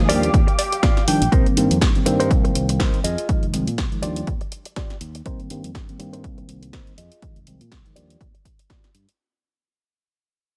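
Filtered disco house at 122 BPM with a lightly swung 16th feel, funky and sensual, fading out across this 9.2-second excerpt from a longer piece as a filter sweep runs throughout: an up-front, tape-warm electronic kick anchors punchy analog drum-machine snare and pumping hi-hats; a dark, round fingered electric bass moves under its own filter sweep; a worn, slightly out-of-tune tine electric piano with phaser, sidechain pumping and low-pass filtering comps through Ebmaj9, Cm7 and Fm7; and a compressed, picked clean electric guitar riff, also pumping and filtered, opens with a fill, while a veiled, distant con sordino violin section holds pumping chords and a ringing, very quiet tambourine, played with hard hands, sounds close and dry only until 1.3 seconds, all in a dry, reverb-light sound.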